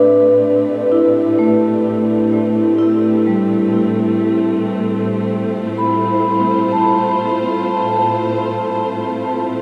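Bathed in a huge, wet reverb with an 8.3-second tail, this ambient passage in free time feels serene and spacious, moving from Am7 to F/A at 4.0 seconds. Up front, a vibraphone played with medium mallets, its motor off, rings out metallic arpeggios through a diffuse delay. Behind it, a dark, close-miked string section holds bowed, expressive chords with vibrato and portamento, fading in across the full 9.6 seconds of this fragment of a longer piece.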